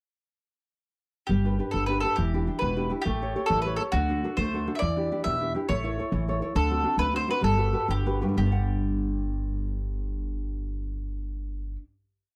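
A lilting 6/8 sway carries this short, complete Italian serenade, sunny and lively in mood, with a slowing from 6.6 seconds before the piece settles on its final chord at 8.4 seconds. Up front, the picked mandolin sings motif-based song phrases with a woody double-string ring, while the fingerpicked nylon-string guitar, dark and full-bodied with old strings, lays down an oompah of bass notes and chord figures. The pizzicato upright bass adds thumpy root-and-fifth notes on the main beats, all captured in a dry, close 1970s-style studio sound with light reverb.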